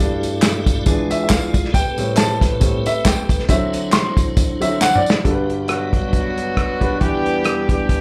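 Reverent and soulful, this short cut from a longer uptempo gospel piece swings at 137 BPM in G major, heard as a live gig through the venue's PA with light club reverb. A boxy, up-front grand piano takes a solo over a progression that moves from Em11/G through E7b9 and Am9 to D9. Beneath it, a tonewheel organ holds piping, scooped chords with a touch of overdrive, chorus vibrato, key click and a slow rotary speaker, while a very quiet, dark French horn section sustains smooth classical-style chords. A dark, smooth acoustic soul drum kit sits up front with a tight kick and medium-tuned snare, and close, dry tambourine and group handclaps with slapback echo carry the groove until 5.2 seconds, just after a drum fill that begins at 4.8 seconds. The harmony then settles onto Gmaj7 and Em7, and at 5.7 seconds a mellow, tight pop-style horn section enters up front with an octave-doubled melody.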